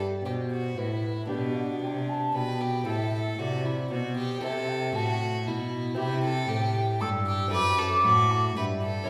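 A close, airy-bowed violin carries a solemn, flowing melody in triple metre alongside a distant, hollow wooden flute's vibrato-touched second line, while a delicate, fingerpicked lute sits in the background and a rich, up-front cello anchors the bass, the ensemble steeped in the wet reverb of a recital hall in this short baroque-style sonata passage cut from a longer piece.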